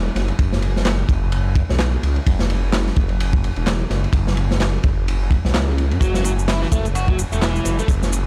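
A gritty, raw breakbeat groove with a swung sixteenth-note feel, this short cut from a longer piece sits on a single chord in a minor key. A thick, swirling detuned saw bass opens the track from the start, its saturated, sustained tone coloured by a phaser and placed up front. The crunchy acoustic breakbeat kit joins at 0.2 seconds with a tight kick, a medium-tuned snare and a dark ride cymbal, all rolled off on top and pushed forward in the mix. Layered electronic handclaps and shaker sit in the background from 0.9 seconds. At 6.0 seconds a biting, double-tracked overdriven electric guitar enters with a picked riff touched by digital delay, dropping out at 7.9 seconds. The production is dark and warm, set in a small room ambience.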